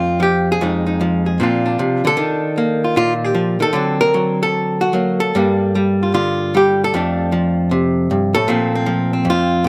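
A miked and amplified archtop guitar, dark, clean and hollow-bodied, plays solo jazz up front, its compressed, picked chords moving through a playful, relaxed swing with a rubato touch over a moderate plate reverb in this brief cut from a longer piece.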